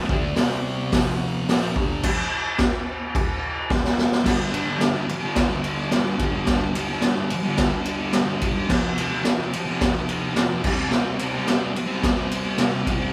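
A thick, double-tracked fuzz guitar leads this raw, rowdy garage rock excerpt at 108 BPM, its picked, distorted riff moving through C5, F5 and G5 power chords before shifting into an unchorded stretch and then returning to grind on G5, F5 and C5. The acoustic drum kit sits up front with a boomy kick, a medium-tuned snare, crash, ride and hi-hat, all gritty and saturated with a rolled-off top, and a drum fill from 3.7 to 4.2 seconds launches the longest passage. Light reverb gives the feel of a band playing live in one room.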